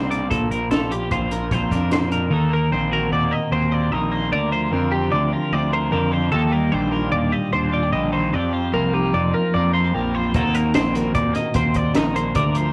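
Intricate and wistful, this math rock and midwest emo passage, cut from a longer piece, moves at 150 BPM in 5/4 with a straight feel, drifting through chords such as Bb69, Ebm6 and Ebmaj9 before settling on F9sus4 and back to Ebm6. Two clean, twangy twelve-string electric guitars sit up front throughout, one carrying the accompaniment through a harmonic tremolo while the other spins bright arpeggios, over a punchy picked bass thick with fuzz and overdrive. A compact cocktail drum kit, dark and rolled-off with a high-tuned snare, plays from 0.1 to 2.2 seconds and returns at 10.3 seconds, all within the moderate booth ambience of a rough rehearsal-room recording.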